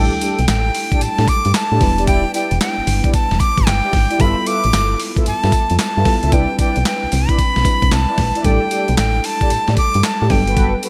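A breathy, reedy jazz flute carries the melody up front from the start, over a mellow FM electric piano with tremolo, dark synth brass stabs thickened by chorus, and a punchy, round FM bass, with a gritty sampler-style soul drum kit of thumpy kick, snare, hi-hat, handclaps and tambourine joining at 0.2 seconds. This confident, slick slice of new jack swing R&B rides a swung groove through suspended, seventh and ninth chords, cut from a longer piece. The bright 1980s-style digital production adds light reverb, and the drums sound as if re-recorded in a large room.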